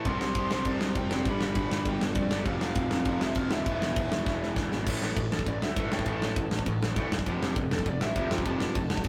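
Punk rock with an angry, aggressive edge, this short excerpt cut from a longer piece charges ahead in a straight 4/4 with a rough rehearsal-room sound, tube saturation and light reverb, led by a dark, overdriven lead guitar through a small cranked amp whose melody turns into a solo at 4.9 seconds. Beneath it, a bright cranked stack guitar and a hollow-body semi-hollow guitar grind out overdriven riffs in the background, joined by a growly fuzz bass. A big, up-front acoustic drum kit with a punchy kick, medium-tuned snare and bright crash and ride cymbals drives everything and throws in a fill from 4.3 seconds.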